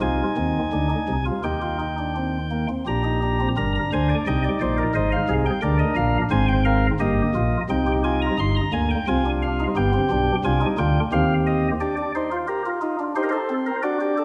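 Set in a steady, straight 3/4 at 88 BPM, this short classical passage is cut from a longer baroque-style four-part fugue for pipe organ. A chamber organ on its flute stops carries the piece alone from 0.0 to 14.2 seconds, spanning a range from G1 up to C6. Its voicing is soft, warm and chamber-like, with a touch of chiff at the start of notes, and it sits up front in the sound. The harmony begins in Eb major, moving through chords such as Fm7, Bb7 and Eb/G, before turning to C minor at 7.7 seconds, where Cm, G7 and Gm/D give the closing stretch a darker cast. A generous scoring-stage reverb with a 2.0-second decay surrounds the organ, lending the serious, contemplative mood a spacious, reflective air.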